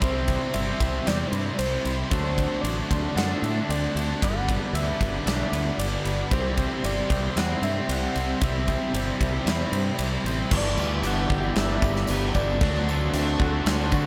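A hazy, dreamy wash of light reverb surrounds this shoegaze and dream pop rock excerpt, with a huge arena drum kit up front, its punchy kick and pumping hall sound driving the groove. A round, gentle FM synth lead carries the melody through chorus and analog delay over a smooth, warbling vintage analog pad. Behind them, a thick fuzz guitar drenched in lush chorus, a tight double-tracked distorted guitar, a dark clean guitar riff with reverse reverb and a very quiet, twangy twelve-string playing arpeggios blend over a modern fingered electric bass, and a jingly tambourine joins at 10.6 seconds as the chords move to G6 and D7.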